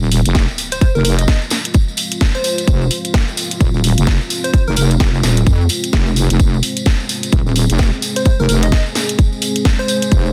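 A swung groove drives this aggressive, gritty bass house cut, with a tight, tape-tinged electronic kick up front, a garage kit of hi-hat and cracking snare, and a jingly, band-limited acoustic tambourine, all opening on an impact as a very quiet sub drop falls at 0.6 seconds. A heavy, saturated wobble bass dominates with detuned square-wave grit, chorus and sidechain pumping, while a deep, warbling vintage pad holds moody sustained chords beneath it. A punchy, catchy plucky unison lead with vibrato, a moving notch and delay plays from 0.7 to 4.9 seconds and returns at 8.2 seconds, all inside a dense, heavily limited modern master.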